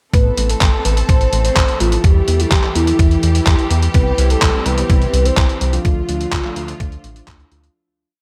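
Melodramatic and bittersweet, this short italo disco piece in A minor moves at 126 BPM over an Am, Em, C, Dm progression. It is driven by an up-front, thumpy four-on-the-floor electronic kick, gritty, overdriven sampler-style handclaps and closed hi-hat with gated reverb, and a glossy, nasal chorused synth bass playing eighth notes. A round, dark octave-layered synth lead carries a motif-based melody through chorus, phaser, delay and cassette-tape coloring above a lush bowed string section holding sustained chords, while a chorused polysynth enters at 4.2 seconds with dotted-rhythm stabs in close voicing set in the background, and the piece fades out from 5.2 seconds.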